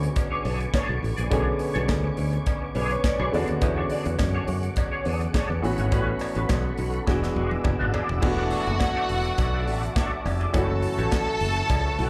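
A straight 4/4 groove at 104 BPM drives this sultry, danceable disco excerpt, cut from a longer piece and heard as a live gig through the venue's PA with a touch of club reverb, though the sound itself stays fairly dry. A modern studio drum kit sets the pulse with a punchy kick, a medium-tuned snare, hi-hat, crash and toms in an airy, polished room, while a metallic cowbell sits in the background from 0.2 seconds. Underneath, a bright, growly fingered electric bass sits up front, and a clear concert grand piano with deep bass and long sustain shares the accompaniment with a dark, clean picked electric guitar colored by wah, ensemble chorus and slapback echo. A smooth tonewheel organ holds sustained chords in the background, its key click and slow rotary speaker giving it a gently swirling body. The chords move from Bm69 through E13 and A69 to E9, and a drum fill from 7.1 seconds leads into a new section at 8.2 seconds, where a lush, focused string section enters up front with bowed vibrato over E9sus4 and F#m7.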